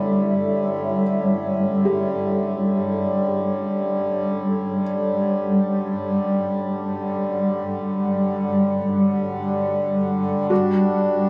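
The music floats in free time, an ambient piece taken from a longer work that feels luminous and peaceful over its 11.3 seconds. A granular cloud pad sits up front, holding sustained chords from G3 to F#5 with a cloudy, detuned, full-bodied tone that evolves under a moving notch and blurs into its own built-in reverb. Beside it, a hand-pumped harmonium breathes a reedy, nasal drone between D3 and D4, also up front. Further back, a felt-muted upright piano plays soft, intimate arpeggios in a narrow span from E4 to G4, its thick-felt tone carried by delay. The harmony rests on Gmaj7 and thins at 10.5 seconds to a Gmaj7 with its third dropped, all bathed in a huge, dark room with a 7.5-second reverb tail.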